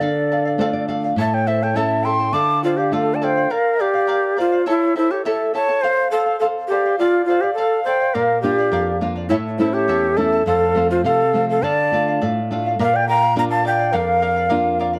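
Andean folk for a small ensemble, wistful and earthy, moving at 103 BPM in a straight 2/4 through a progression of Dm, A, Bb and F. A breathy, mellow large wooden quena carries the melody up front with vibrato and a slightly unsteady tone, while a hollow cane quena plays a quieter second line in straight tone, both with a crisp, chiffy attack. A bright, shimmering fingerpicked charango accompanies throughout, and a dark, full-bodied nylon-string guitar adds a fill at 0.3 seconds, drops out at 3.5 seconds and returns at 8.2 seconds, all in a dark production with moderate spring reverb and small-room ambience in this cut from a longer piece.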